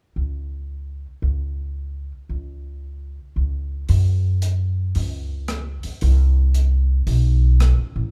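An up-front upright bass carries this short swing-era jazz cut, its plucked steel strings giving a woody, thumpy tone. The bass plays alone from 0.2 seconds, setting a sophisticated, warm mood with a swung eighth-note feel in small-group swing and bop style. At 3.9 seconds a compact cocktail drum kit joins quietly far behind it, adding hi-hat and rim clicks in a dark, smooth sound with a rolled-off top that suggests a small room. The bass stays in its low register throughout and rings on until 8.1 seconds, just after the drums fall away. Light reverb gives the whole a warm setting, as if the moment were lifted from a longer performance.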